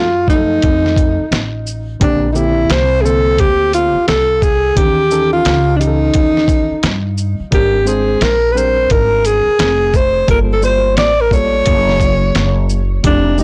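A breathy, close-miked alto saxophone sings a jazz solo with vibrato up front with tape echo, over a worn, slightly out-of-tune tine electric piano with light overdrive and a woody, growly pizzicato upright bass; a muffled, compressed sampler-style drum kit with a thumpy kick joins at 0.3 seconds, and this relaxed, swung jazz-hop groove at 87 BPM moves from F7b9 to Gb9 in a blown-out, overdriven recording with light reverb.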